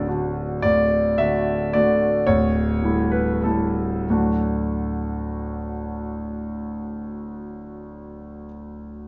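Dotted rhythms in a rubato triple-time lilt carry this excerpt from a graceful and proud romantic dance for solo concert grand piano, which slows over its first 4.1 seconds, resting on D before a move through A7/D and back home, its clear, natural tone sitting up front with deep bass and long sustain inside a moderate recital hall reverb.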